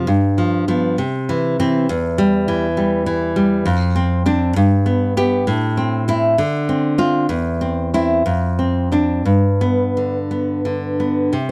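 Wistful and passionate, this short excerpt from a longer romantic piece for solo classical guitar moves in a rubato 6/8, with the dotted-quarter pulse drifting between 57 and 69 BPM. A nylon-string guitar plays alone from 0.0 to 11.5 seconds, fingerpicked with a bright, acoustic tone and sitting up front in the sound. Its range spans from E2 up to G4, and it is tuned slightly high, to A4 = 443 Hz. The harmony opens on G7 and settles on C, then passes through Em, Dm7/F, G, Am, Dm7 and C/E before returning through Dm7/F to G at 9.3 seconds. The recording has the dry, close feel of a 1970s studio, touched with light reverb.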